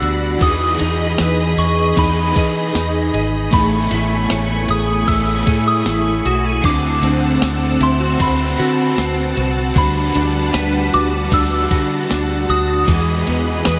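A clean 12-bit digital drum machine sets a straight, unhurried 4/4 at 77 BPM, its thumpy kick, medium-tuned snare, ride cymbal and tambourine carrying a tape-like softness beneath a punchy, foam-muted fingered electric bass that sits up front in this dreamy, floating dream pop excerpt. A dark, clean electric guitar plays arpeggios through ensemble chorus and delay, while a double-tracked, overdriven semi-hollow guitar shimmers with tremolo in the background and a warbling sawtooth string machine of violas holds sustained chords through Emaj7, Amaj9, D13 and Gmaj7/D. Above it all, a pure FM synth bell carries the melody with fast-attack, decaying notes coloured by chorus, phaser and delay, and the whole mix is soaked in a lush hall reverb.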